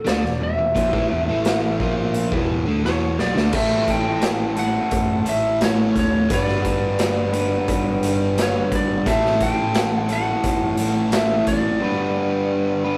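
A rough rehearsal-room recording with tube saturation and a stone room reverb carries this driving, swaggering classic rock excerpt at 87 BPM, where an up-front, compressed overdriven electric guitar riff and a sludgy distorted guitar in the background ride over a dark, round overdriven picked bass and a gritty, punchy raw garage drum kit, whose fill at 2.8 seconds carries the band from the opening E5 into a section moving between A and G, while a twangy, slightly broken-up lead guitar plays the melody on top.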